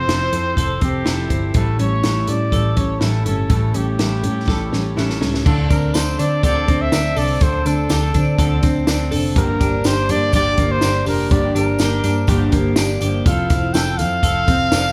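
A breathy, whispered trumpet carries the melody over fingerpicked acoustic guitar, twangy twelve-string electric arpeggios, a round foam-muted vintage bass and a dry, up-front cocktail drum kit with dark cymbals in this restless, bittersweet jangly indie pop excerpt in D minor at 123 BPM, where a drum fill at 4.5 seconds leads into a new section moving from Dm7 to Gm7 as a jingly tambourine joins in the background at 5.7 seconds, all set in a live-room sound with vinyl crackle.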